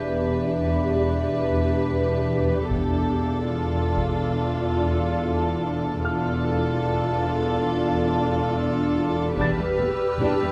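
Tense and mysterious, this suspense film-score excerpt rests on a dark, woody viola section, a soft-attack double bass section and a pure-toned cello section. Around them sit a swarming, detuned granular drone and a warbly lo-fi tape-like pad with chorus, while a clear violin section floats a sul tasto melody and a boxy grand piano adds high texture in the background over Em7 and F6/E chords. A close, dry taiko ensemble enters at 2.7 s, and an intimate, smooth-topped upper violin section joins the drums at 9.4 s, all within a moderate scoring-stage reverb.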